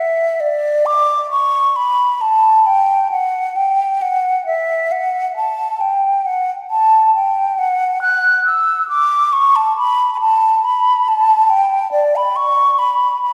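Classical, baroque-style fantasia for unaccompanied flute, this 13.3-second passage cut from a longer piece has a dance-like, radiant mood, moving in a free, rubato 4/4. The lone concert flute sounds pure and hollow, with soft attacks, vibrato and lifted highs, singing from D5 up to F#6 and sitting up front. A lush concert-hall reverb with a long 2.2-second decay surrounds it, giving the sense of hearing from further back in the room.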